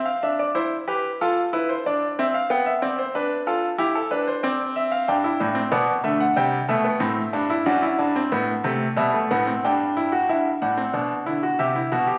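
Elegant and stately, this baroque-style three-part fugue for solo grand piano moves at 92 BPM in a straight 4/4. The bright, brilliant piano sits up front and spans F#2 to G5, tracing a progression from C through Dm7, G/B, Am7 and D/F# before settling on G near 9.0 seconds, with a new section arriving at 10.3 seconds. A wet recital hall reverb surrounds the playing, while the crackle of a very old 78 rpm record lends an antique patina to this brief fragment cut from a longer piece.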